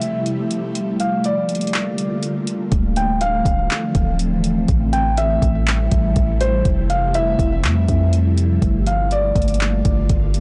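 A felt-muted upright piano carries a soft, intimate melody through a delay, floating over an airy, detuned pad whose sustained chords shimmer with ensemble chorus, phaser, reverb and sidechain pumping in this hazy, melancholic cloud-rap excerpt at 122 BPM in a half-time feel. An overdriven R&B drum kit of soft kick, handclaps and hi-hat sits up front from the start, and a round, deep 808-style bass with tube saturation joins at 2.7 s as the harmony moves through Fmaj9, Gm9, Dm9 and Am7. The whole recording is blown-out and overdriven, with light digital ambience and a dulled top end.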